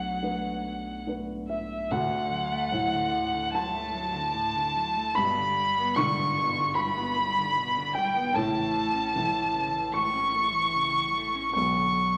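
A single bowed violin, rich and vibrato-laden, carries a tender, hopeful melody up front in this unhurried, rubato neoclassical passage, joined by a smooth bowed cello second line, a woody upright piano accompaniment close at hand, and a deep, dark sine sub bass in the background, all set in a wet large-studio reverb as the chords move from Bm7 through D, G and A before settling on Bm.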